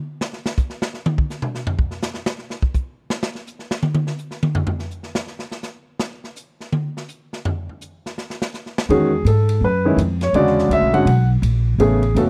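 A swung 4/4 pulse at 166 BPM opens this relaxed, playful jazz piano trio fragment in E major, with an airy, polished big-band drum kit (punchy kick, medium-tuned snare, hi-hat, ride and toms) soloing alone from 0.2 seconds until a warm baby grand piano and a woody, growly pizzicato upright bass arrive up front at 8.9 seconds over Emaj13, E13 and Amaj9 chords, all captured in a dry, close 1970s-style studio sound.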